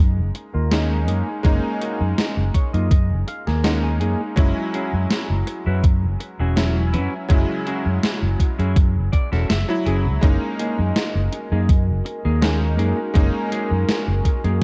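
A lightly swung sixteenth-note pulse at 82 BPM in 4/4 carries this nostalgic, faded vaporwave excerpt in F# major, with a gated 80s drum machine supplying hi-hat and a gated-reverb snare with 12-bit sampler grit, joined at 1.4 s by a thumpy, up-front electronic kick. A dark, round fingered electric bass anchors the low end while a bright, cutting electric grand piano, clangy in its lower notes and treated with analog chorus and delay, plays short-sustained accompaniment over chords moving from F#69 to E69 and back. A clean, picked semi-hollow guitar carries the riff through a low-pass filter sweep, with subtle chorus and analog delay, adding fills along the way. At 10.8 s a warbling, detuned tape-like pad fades in with sustained chords, soft-edged and lo-fi under its chorus and reverb. The overall production is dark and warm, with only a light reverb around the parts.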